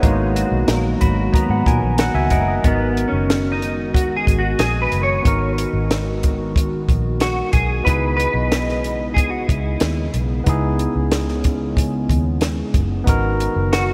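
A clean, picked electric guitar sits up front with a scooped, chorused tone and a warbly pitch drift, taking a solo from 2.6 s to the end of this lonely, mellow indie and bedroom pop fragment cut from a longer piece. Before it, a barky tine electric piano, lightly overdriven through a combo amp and coloured by cassette tape, plays a fill from 0.7 s to 2.6 s and continues as accompaniment throughout. Underneath, a nostalgic, lo-fi, detuned pad with a slow attack and long release holds sustained chords dark in the background. A round, foam-muted vintage fingered bass anchors the low end, while a compact cocktail kit with a punchy kick, high-tuned snare and hi-hat sits dry and forward in a straight 4/4. The harmony moves from G#m9 to G#m7 and through C#m9 before returning to G#m7, all inside a dreamy mix soaked in huge ambient reverb.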